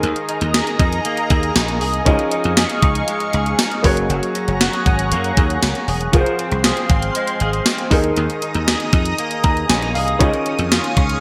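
A bright 1980s-style digital production with a moderate plate reverb frames this moody, nostalgic slice of pop, cut from a longer piece and moving at 118 BPM in a straight 4/4. Up front, a gated digital drum machine drives the groove with a thumpy kick, a gated-reverb snare, hi-hat and tambourine, while a dry, punchy slap bass, thumbed and foam-muted, sits alongside it with a direct, bright tone. A lush, warbling pad of detuned sawtooth and square waves holds thick sustained chords, its slow attack and long release colored by chorus and phaser. A clean, compressed electric guitar, recorded direct, plays a picked riff through ensemble chorus and digital delay, and a baby grand piano with a natural, short-sustained tone supplies accompaniment, stepping forward with a fill from 9.2 to 10.2 seconds. The harmony drifts through suspended and add9 colors, moving from Ebsus4 through Dbadd9 and Gbadd9 to Fm before returning to Ebsus4 and Dbadd9.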